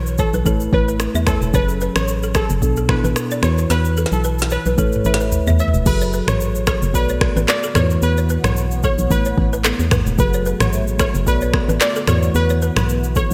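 This short cut from a mellow, sultry afrobeats groove opens with a clean tine electric piano and a hollow, organ-like FM bass with a dark, decaying tone, joined at once by an overdriven afro-pop kit whose deep kick and woody snare sit up front amid gated reverb, snaps, claps, shaker and a drum fill from 3.7 to 5.9 seconds. A glassy, detuned wavetable pluck carries the melody through chorus and delay, while a buzzing, dry balafon riff played with hard rubber mallets lingers in the background. At 6.6 seconds a cloudy, evolving granular pad adds blurred sustained chords beneath the bright 1980s-style digital sheen of the mix.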